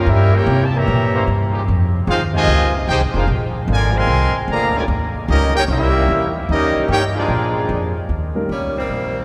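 A swung 4/4 groove drives this brassy big band swing excerpt, with a woody pizzicato upright bass up front under a bright, smooth-topped trumpet section carrying the melody and a vintage-tinged trombone section with light vibrato playing a second line until 7.9 seconds, while a very quiet, soft-attack trombone section holds sustained chords behind them. At 8.4 seconds a natural grand piano briefly touches in from the background, and the clear saxophone section takes over the melody with vibrato at 8.5 seconds over the continuing bass. A long, wet cathedral reverb gives the whole ensemble a spacious church or concert-hall sound.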